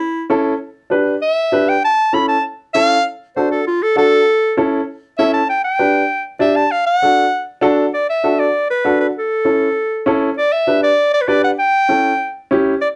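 A straight 4/4 pulse drives this Latin piece at a brisk 197 BPM, and its D major setting gives it a festive, sunny mood. A clear, close-miked clarinet carries the melody in a classical style, ranging from E4 up to B5 and taking a featured solo through the first 7.9 seconds. Beneath it, a woody upright piano supplies the accompaniment, its tone warm. Both instruments sit up front in a moderate studio ambience. The harmony moves among A, G and D before a second section begins at 7.9 seconds and turns toward a closing A7. This short passage is cut from a longer piece.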